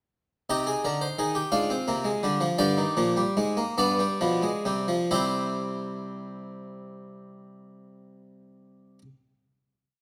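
In a slow, straight 6/8 at 42-60 BPM counted in dotted quarters, this brief baroque-style fugue for solo harpsichord slows down from 0.5 to 6.5 seconds, giving it a contemplative, solemn gravity. The close-miked, Flemish-style harpsichord sounds brilliant and plucked, with octave strings lending fullness as four imitative voices weave between G2 and F5 over C minor, F minor and G7 harmonies. At 5.1 seconds it settles onto a final C major chord, which rings into a moderate recital-hall reverb until 10.0 seconds.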